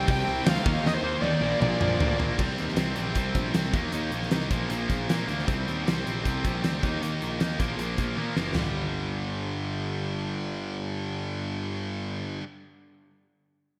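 Hard rock in G minor at 155 BPM, driving and aggressive, opens with a dark, high-gain lead guitar melody with delay over a double-tracked, very quiet crunchy guitar for the first 2.4 seconds, while a cranked stack guitar and a heavy distorted guitar hammer out riffs alongside a round, fuzz-laden bass, and a big, up-front drum kit with a fat snare, punchy kick, bright cymbals and gated reverb throws in fills before dropping out at 8.6 seconds, all set in a lush hall with bright 1980s-style digital production in a section cut from a longer piece.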